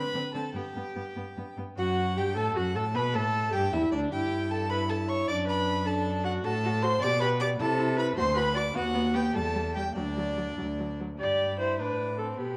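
In 6/8 at 102 BPM with a rubato feel, this spirited, cheerful fragment of a quick classical-period string quartet movement sets a warm, reedy gut-string violin singing the melody above a dark, nasal, distant second violin line, a bowed period-style viola accompaniment and a rich cello bass sitting up front, all moving from D major into G major at 6.4 seconds within a moderate recital-hall reverb.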